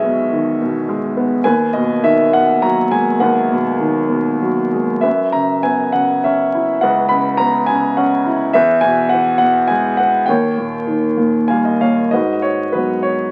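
Heard through the crackle of a very old 78 rpm record, with moderate studio reverb, this short excerpt from a longer classical piece features a solo concert grand piano, natural and up front, with a deep bass. In lyrical 3/4 at a rubato 94-107 BPM, the sunny mood moves through chords such as Emaj7, F#7sus4 and Eadd9. A piano fill at 11.2 seconds leads into a new section at 12.1 seconds that opens on G#m7.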